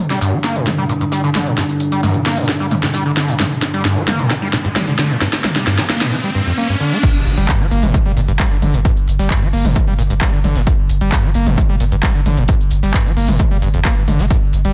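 A relentless, driving peak-time techno excerpt in G minor at 132 BPM opens with a squelchy, screaming distorted acid line, a metallic, eerie FM drone in the background and an up-front techno drum kit with a cracking snare and smooth hats over a very quiet, dry 70s acoustic kit, before a background riser builds into the drop at 7.0 seconds, where an impact lands and a punchy electronic kick and a deep, saturated sine sub bass join, the dense, heavily limited mix sitting in a moderate stone room reverb.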